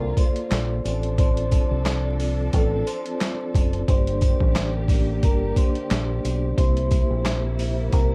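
Gritty and moody, this boom-bap hip-hop clip, cut from a longer piece, pairs a soft-mallet vibraphone melody with a second vibraphone comping beneath it, both metallic and ringing with fast motor vibrato and hazy with filtering and cassette-tape colour, while lush, woody bowed string stabs sit lower in the mix with tape echo. A dark, round, punchy fingered electric bass holds the low end up front, and at 0.2 s a compressed sampler-style kit enters with a thumpy kick, medium-tuned snare, handclaps and hi-hat over a swung groove, joined by faint, jingly sleigh bells in the background. The whole home-cassette recording is dry, with vinyl crackle.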